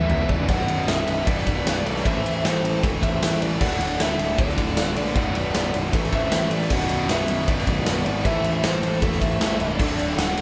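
Played live in one room with light reverb, this heavy, relentless heavy metal excerpt in B phrygian at 155 BPM opens with a drum fill from a big, up-front rock kit with a punchy kick and bright cymbals. A dark lead guitar through a small cranked amp then carries the melody over a very quiet bluesy overdriven second line, while a double-tracked, compressed overdriven guitar and two bright, tight distorted guitars churn out low riffs and a growly fuzz bass drives underneath, cycling through Bm, Am and D until the cut at 10.4 seconds.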